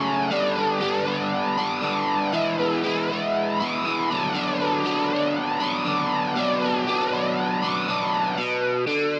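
A straight 4/4 pulse at 119 BPM underpins this mysterious, hypnotic rock fragment in B minor, cut from a longer piece, where a lone overdriven electric guitar plays from the start to 9.2 seconds, moving through G, E, Bm/D and Bm. The picked guitar sits up front with a bright, scooped, double-tracked tone, compressed and colored by flanger and analog delay. A moderate spring reverb and an echo-heavy mix wrap it in a haunting, repeating haze.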